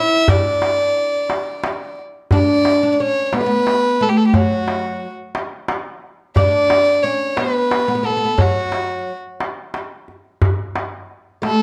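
This Arabic maqam ensemble piece moves in a straight 6/8 with a warm, festive mood, in a short passage cut from a longer work. A single bowed violin sits up front with the melody, its soft attack and airy bow giving a pure, floating tone with a slightly boxy edge. Beneath it, a fretless oud plucked with a plectrum plays a second line, its double strings sounding woody and deep. A metal-shelled darbuka joins at 0.3 s, crisp and large yet deep, placed up front with a live-room feel. A brief opening passage gives way to a longer new section at 2.3 s, all set in a moderate recital hall reverb with a dark overall production.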